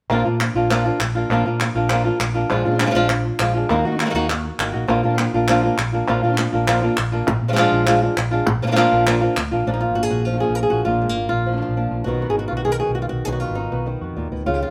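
A fingerpicked flamenco guitar melody opens at once, up front and sitting between Bb2 and Bb4, alongside a second flamenco guitar adding stabs from the background in a darker shade, a round, amped fretless electric bass, and crisp, vintage-toned palmas hand claps. The piece moves at a brisk 200 BPM in straight 4/4, set in Bb phrygian dominant, and carries a passionate, mournful mood. The harmony circles around Bb, leaning through Bb7 and Ebm before returning home, then shifting to B near 12.1 seconds. The claps drop out at 9.5 seconds, just before a new section begins, leaving the two guitars and mellow bass to carry the final passage. A moderate stone room reverb places the ensemble in a natural space, and the recording is an excerpt cut from a longer piece.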